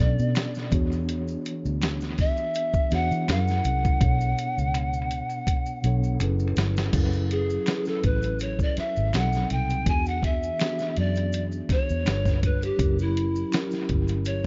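An echo-heavy mix with its highs rolled off and light reverb frames this smooth, sultry neo-soul R&B excerpt, which rides a gently swung 4/4 groove. A dusty, sampler-style drum kit sits up front with a thumpy kick, a fat snare and gritty compression. Beneath it, a round, foam-muted fingered electric bass holds down the low end while a mellow tine electric piano, heard through its built-in speakers, carries rich extended chords, and maracas, finger snaps and group handclaps stay in the background. A breathy bamboo pan flute with vibrato and a tongued chiff leads throughout, trailing analog delay, and after a drum fill from 4.0 seconds it takes a solo from 6.9 seconds.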